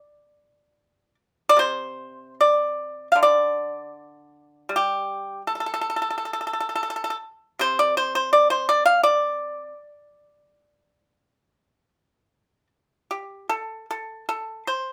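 The rhythm flows freely in a rubato feel over a loose 4/4 pulse, giving this Chinese traditional solo for plucked strings a contemplative, elegant character. A single acoustic pipa carries the whole passage, played with fingerpicks and sitting up front with a dry, percussive attack. Its lines span from C3 up to F5, and the instrument is tuned slightly above standard pitch, to A4 = 442 Hz. After a short opening phrase, a longer central passage begins at 1.6 seconds and runs until 13.5 seconds, when a brief closing idea takes over. A moderate studio reverb lends a modest sense of room around the plucked notes, and the recording ends mid-piece as a fragment cut from a longer work.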